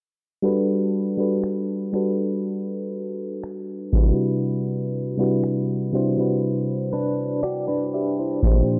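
Contemporary R&B at a slow 60 BPM in 4/4, this tender, romantic passage is cut from a longer piece and rests on a Gmaj9 chord that moves to Cmaj9#11. A glassy FM electric piano opens at 0.4 seconds with fast, bell-like attacks that decay, its chorus giving the tone a vintage warble over a faint noise layer, and it adds a short fill near the close. A booming analog drum machine joins at 1.4 seconds with a deep kick, metallic hi-hats and finger snaps, sitting dry and up front with a tape-softened character. At 6.9 seconds a clean, direct-recorded electric guitar enters with picked, compressed arpeggios coloured by tremolo and tape echo. The overall sound is dry and gritty, with light reverb and a low-pass filter sweep running through the whole passage.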